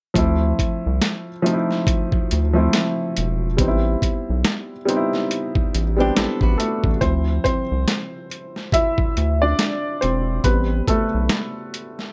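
An intimate baby grand piano with audible action noise opens this smooth, introspective neo-soul R&B excerpt on a lightly swung groove, joined almost at once by a round, deep analog bass and a gritty, overdriven boom bap sampler-style kit with a thumpy kick, those three sitting up front in a dry room over Dm9 and Am9 chords, while a quiet fingerpicked flamenco guitar slips in at 6.0 seconds just before the piano takes a solo from 7.0 seconds.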